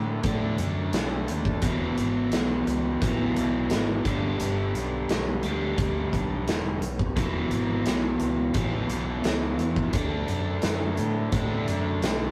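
This is a rough rehearsal-room recording with light reverb, a gritty, raunchy fragment cut from a longer piece of blues rock power trio and southern rock, tuned slightly low to A4 = 438 Hz. At a straight 87 BPM in 4/4, a biting, double-tracked overdriven electric guitar sits up front, picking a riff between E2 and D4. Beneath it, a fingered electric bass played through fuzz and overdrive growls and punches from E1 to A2, its tone blending direct signal and amp. The acoustic rock kit comes in at 0.2 s with hi-hat, a punchy kick and a medium-tuned snare; it sounds big and roomy yet distant, with a rolled-off top and a warm body. The harmony moves from D to E, then to G, lands on an E5 at 7.2 s and returns to D. The guitar and bass play throughout the 12.3 seconds, while the drums drop out at 12.2 s.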